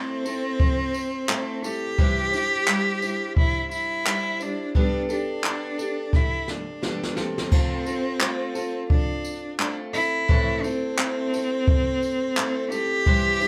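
A single bowed cello carries the melody up front, its tone rich and focused with a singing vibrato, giving this sunny, easy-going acoustic pop excerpt a lyrical voice. Beneath it, a picked steel-string acoustic guitar plays a dark accompaniment from the opening moment, the occasional finger squeak adding a touch of intimacy. A jazz kit played with brushes joins at 0.3 seconds, smooth and close, with a boomy kick, a medium-tuned snare, handclaps, tambourine and a crash cymbal, all heard through a rolled-off top. The groove has a relaxed swing on the sixteenths, and a drum fill from 6.1 to 7.5 seconds leads into the repeat of the phrase. The harmony moves through Am, Cadd9 and Gadd9, then Dm7 back to Am, while the band plays together live in one room with a moderate studio ambience, a short fragment of a longer piece.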